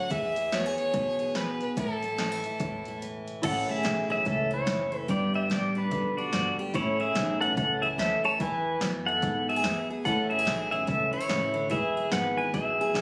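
A swung 145 BPM feel in 4/4 drives this down-home, heartfelt honky-tonk and classic country excerpt in A major, with a punchy analog drum machine (kick, snare, hi-hat and crash, re-recorded in a small room), a woody pizzicato upright bass and a bright, full-bodied picked dreadnought acoustic guitar holding the groove throughout. A clear, biting fiddle with light vibrato takes an intense solo up front until 3.0 seconds, and after a short break the pedal steel guitar enters at 3.4 seconds as the lead, clean and compressed with slide and volume swells. A dark, mellow concert grand piano with deep bass sits in the background beneath it, all heard through moderate studio reverb with the slightly roomy character of a phone recording.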